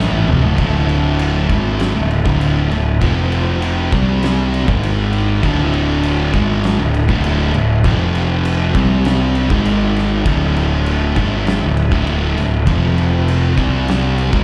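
This live club recording, heard through the venue's PA, has a dark, gritty sound with little reverb, as a brooding, hypnotic stoner and doom metal excerpt in D minor at 99 BPM. An oversized, low-tuned acoustic drum kit opens with a short fill over the first 0.6 seconds, its punchy kick, fat snare, toms and dark crash cymbals saturated and rolled off at the top. Out front sits a bright, overdriven fuzz bass, picked and punchy, anchoring a cycle of power chords that moves from D5 through F5, C5 and G#5 before returning. Two thick, fuzz-distorted guitars each play a riff a step back in the mix, sharing the same low register. Far beneath them, a very quiet tonewheel organ holds mellow, flute-like sustained chords, its clean percussive attack turned slowly by a rotary speaker and chorus vibrato.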